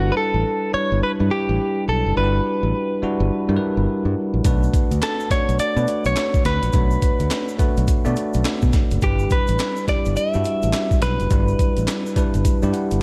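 A punchy, gritty breakbeat sampler-style drum kit with a thumpy kick, high-tuned snare, handclaps, hi-hat and gated reverb enters at 4.4 seconds, joined by a grainy tube shaker in the background, driving this bouncy new jack swing R&B excerpt at 105 BPM with a swung 16th feel, where a clean, picked electric guitar carries the melody over a bell-like tine electric piano and a bright fingered electric bass moving through G6 and Bm7, closing with a short electric piano fill at 12.5 seconds.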